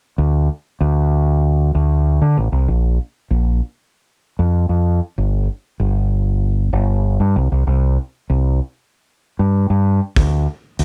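A growling fingered electric bass carries this dark, mysterious psychedelic rock excerpt, its overdriven, amped tone sitting up front as it moves between G1 and D3 from 0.2 seconds onward. The piece is in D minor at 96 BPM in a straight 4/4, and the bass plays on its own for most of its short length. Only at 10.2 seconds does a cloth-damped, thuddy drum kit arrive, giving hi-hat and a tight kick with a gritty, saturated character and a rolled-off top. The drums also sit close and up front, sounding like an acoustic kit in a small room. Little reverb surrounds either part, so the sound stays dry and direct until the fragment ends at 10.8 seconds.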